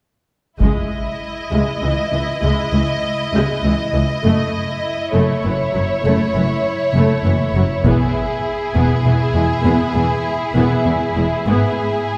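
Cinematic, epic orchestral film score in C# minor, moving at a slow 66 BPM in a straight 12/8, with a dramatic, relentless mood in this short excerpt cut from a longer piece. The violin section carries the melody between G#4 and D#5 with light vibrato and a smooth top, while a second, more distant and lush violin line holds E4 beneath it. Violas fill the middle with expressive portamento, and the rich cello section joins the woody double basses to anchor the low end, all entering at 0.6 s. A taiko ensemble struck with heavy sticks punctuates the opening and returns from 7.8 to 9.0 s. The harmony moves from C#madd9 through F#m7 and E to G#m, all bathed in the wet reverb of a church or concert hall.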